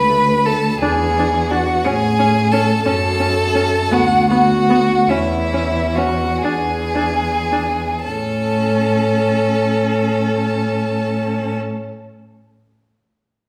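This classical excerpt, cut from a longer piece, is a slow romantic movement for string quartet in A major, moving in 6/8 at roughly 34 to 60 dotted-quarter beats per minute with a warm, tender, rubato feel. The first violin carries the melody with a rich, close vibrato tone and expressive portamento. Beneath it the second violin plays a clear, smooth and even second line. The viola fills in the accompaniment with a focused sound and a smooth top. The cello anchors the bass with its own vibrato and sliding portamento, sitting up front in the balance. The tempo slows from 1.8 seconds to 8.1 seconds as the harmony passes through F-sharp minor and a dominant E7, then a new passage opens on A at 8.1 seconds, all heard from further back in a reverberant recital hall.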